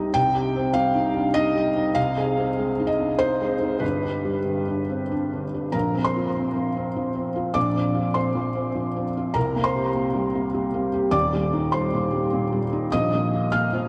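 A felt-muted upright piano plays alone through this wistful, melancholic neoclassical minimalist fragment at 100 BPM in a rubato 3/4, its soft, intimate tone sitting up front with audible action noise under a subtle chorus and diffuse ambient delay, while a cathedral reverb lasting 6.3 seconds soaks the mix in a dreamy haze as the harmony moves from Cm through Ab/C and G before shifting at 5.7 seconds toward Bbsus2, C5, Eb6 and Bb5.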